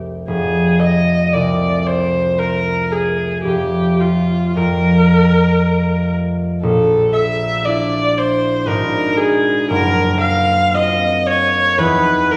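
A rich, smooth viola carries the vibrato-laden melody over ringing, fingerpicked concert harp in this mysterious, wistful impressionist classical duo, drifting with rubato at 58 BPM in 3/4 and F dorian, both players up front within a wet recital-hall reverb heard from further back in the room, in an excerpt cut from a longer piece.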